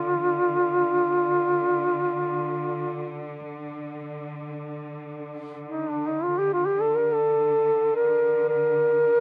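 Dry and open-air, this solemn, mournful fragment of a Caucasian folk lament sets a mellow, vibrato-laden duduk up front, singing its folk-style solo line, above a lush, bowed string section that holds a smooth, even, symphonic drone low beneath it.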